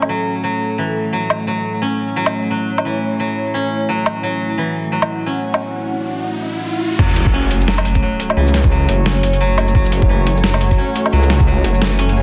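Spacious and tense, this half-time drum and bass excerpt opens with a dark, moody analog pad holding sustained chords under a filter sweep, while a bright, woody koto picks arpeggios through a low-pass filter and tape echo, and a gritty, overdriven boom bap sampler-style kit sits up front with filtered snare, hi-hat, shaker, woodblock and crash. A riser and sub drop enter at 5.8 seconds, and at 7.0 seconds the drop arrives with an impact, a thumpy, pitched-down electronic kick and a deep, rumbling detuned saw bass that beats up front. A lush hall reverb lends digital ambience to a dense, heavily limited mix, as the pad pumps against the sidechain.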